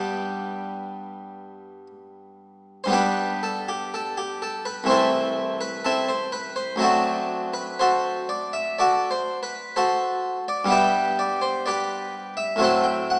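A solo harpsichord, close-miked, full and brilliant with plucked Flemish-style octave strings, sits up front in this serene, radiant fragment of a baroque-style classical suite movement in G major, moving with rubato at 56-64 BPM in 4/4 across a range from C2 to G5, passing from G through Am/C and D7 back to G before settling on F#dim/A at 12.6 seconds, all heard within a wet concert hall reverb and a small speaker sound.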